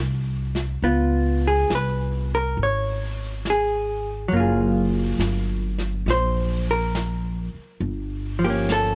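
A clean, picked hollow-body jazz guitar sits up front in this wistful, smoky jazz ballad excerpt, its dark, compressed electric tone carrying the accompaniment from F3 up to Db5. Beside it, a woody pizzicato upright bass with steel strings stays close to the listener, holding the low end between Gb1 and Db2. A vintage brush drum kit joins at 0.5 seconds, keeping brushed snare and hi-hat well behind the strings with a smooth, rolled-off sound from a small room. The swung eighth notes give the slow 4/4 pulse a relaxed, late-night sway, while the harmony drifts from a rootless Bb6 through Db7 and Gbmaj9 before settling on Gm7b5 near the close. With little reverb, the trio sounds dry and intimate.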